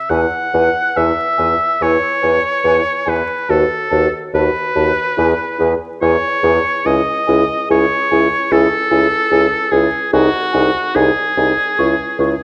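A dark, vinyl-crackled recording set in a wet recital-hall reverb carries this melancholic, elegiac classical excerpt for wind quintet, a slow romantic movement in E major at 72 BPM with rubato, where a pure, hollow concert flute sings the melody in the background, a clear oboe with light vibrato shapes the up-front second line, a dark, distant clarinet and a soft-attacked French horn with vibrato fill out the accompaniment, and a warm bassoon anchors the bass as the harmony drifts from E toward C#m by 11.8 seconds.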